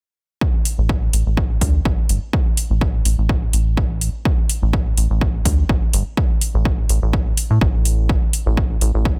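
An overdriven, punchy electronic kick drum opens this sparse, cool minimal techno cut at 125 BPM with a light 16th-note swing, soon joined by metallic, overdriven hi-hats re-recorded in a large room and a rubbery, nasal square-wave bass from 0.8 seconds that pumps against the sidechain between G1 and A2, all up front in a dry, dense, heavily limited master.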